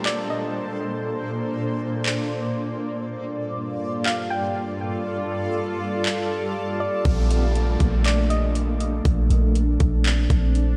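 A shimmering, detuned pad sustains Bbmaj7 and Gm7 chords alongside a reversed, swelling texture in the background and a distant downlifter, as a trap kit with a hard-clipped kick, metallic hats and handclaps sets a half-time feel at 120 BPM in Bb major. A soft, round pluck carrying chorus and delay sketches a high melody, mostly from 4.1 to 8.5 seconds, while the pad pumps against the beat. At 7.1 seconds a deep, boomy 808-style bass arrives up front, grounding this floating, dreamy cloud-rap excerpt in a lush hall reverb.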